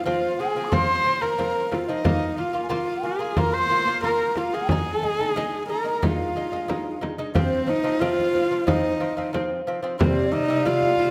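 A husky, up-front horsehead fiddle carries the melody with light vibrato, portamento and an airy bow, trailed by tape echo, while a distant, hollow large dizi with a buzzing membrane plays a second line above it. Beneath them, a delicate fingerpicked lute on double nylon strings supplies arpeggios, and a close frame drum adds percussion from 0.1 seconds, with the music moving into a new section at 7.3 seconds. This solemn, windswept stretch of Mongolian folk music is cut from a longer piece and sits in a reverberant recital hall.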